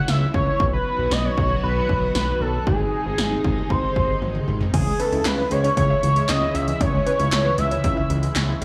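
A bold, retro octave-doubled lead carries the melody up front, its chorus and dub echo trailing through an echo-heavy mix in this melancholic, nocturnal synth-pop excerpt in C# minor at 116 BPM. Beneath it, a fat, saturated analog bass and punchy 80s electronic pad drums with gated reverb on snare and toms drive the groove, while a lush string machine with phaser sustains chords that move from C#m through B and G#. A drum fill at 4.2 seconds leads into the second section, where a decaying unison pluck enters with arpeggios at 4.7 seconds and a dark, lo-fi warbly pluck adds a second line from 5.0 seconds, both sitting in the background.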